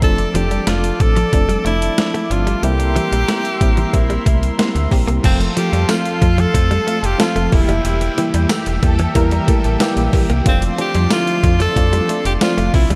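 A big arena sound in a lush hall reverb frames this moody, urgent 1980s-style pop excerpt, where a bright tenor saxophone with vibrato sings the melody over a mellow FM electric piano with tremolo and slapback echo, a thick, detuned unison pad with chorus, a snappy, metallic slap-like FM bass, and a thumpy, up-front 12-bit drum machine with crash, hi-hat, snare and tambourine, while a compressed clean electric guitar picks a chorused riff in the background, a very quiet overdriven guitar joins at 5.2 seconds, and a distant, expressive violin section adds a brief second line from 8.5 to 10.3 seconds.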